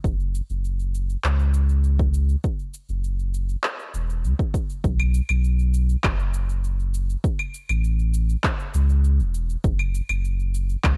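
Relaxed and wistful, this sunset chillout excerpt in straight 4/4 rests on a deep, round sine sub bass that sits up front with a mellow, sustained tone. A punchy, overdriven electronic kick drum sits up front beside a layered, gritty mesh of electronic cabasa, handclaps and claves, all playing throughout. The dark, warm production is bathed in digital ambience, and the music moves into a new section at 4.8 seconds.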